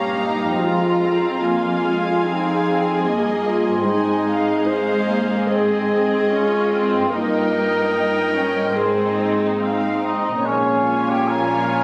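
Uplifting and moving, this short cinematic passage, cut from a longer piece, unfolds at a rubato 73 BPM in 4/4 in A-flat major. A mellow, present clarinet carries a second line from the opening until 10.0 seconds, when a punchy, roomy cor anglais with light vibrato takes up that role. Beneath them, muted violins and violas play con sordino with a veiled, dark shading, the violas lush and up front in the accompaniment. The cellos hold the bass, and a ringing, thumb-plucked concert harp adds arpeggios in the background. At 10.5 seconds a muted violin section takes a melody on a high Ab5 while a muted double bass section enters quietly behind it on Bb1. The harmony moves from Bbm through Fm7 and Ab to Abadd9 and lands on Bbm7, heard through a moderate scoring stage reverb captured on a phone in the room.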